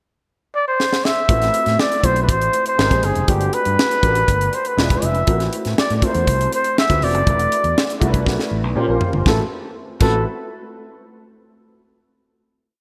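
A crisp sixteenth-note studio groove from a tight funk drum kit, with its high-tuned snare and gated reverb, drives this short, bittersweet and slick 1980s jazz-funk pop piece, where a breathy flugelhorn carries motif-based song phrases up front with light vibrato and scooped notes, a growly fretless electric bass plays an agile syncopated line, and a baby grand piano with ensemble chorus pushes rootless chords with grace notes, set in a bright digital production with lush hall reverb before a final chord at 9.3 seconds.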